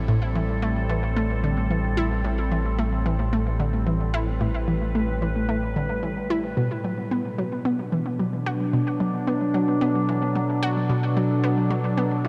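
Ambient, sequencer-driven space music at 111 BPM with a cosmic, hypnotic mood, where a bright, detuned analog pluck riff with chorus and analog delay sits up front over a morphing, warbling wavetable pad of sustained vintage chords, while a deep, round sine sub bass holds the low end until 6.5 s, as the harmony moves from Am7 to Bm7 at 6.6 s in a dark, warm production bathed in huge reverb.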